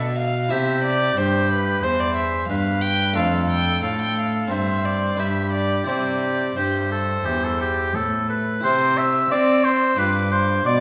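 A radiant, flowing baroque-style sonata movement in C major at 89 BPM in 4/4 opens with a gut-string violin melody, a warm oboe second line, a brilliant, airy harpsichord accompaniment and a nasal, lightly vibrato cello bass all sounding together, wrapped in the wet reverb of a recital hall in this short excerpt cut from a longer piece.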